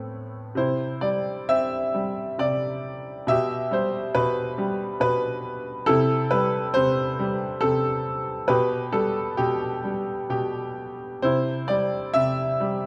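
A bright, worn-sounding grand piano opens on an Amadd9 chord and settles into Cadd9, carrying a reflective, wistful classical solo in C major at 67 BPM in 3/4, with uneven, rubato phrasing and tuning a hair above standard at A4 = 441 Hz. Sitting up front with short sustain, the piano ranges from A2 to E5 as the harmony moves through Cmaj7/B, C and Gadd9/B before returning to Cadd9 at 11.2 seconds. A moderate scoring-stage reverb frames this brief passage, cut from a longer piece, which runs to 12.9 seconds.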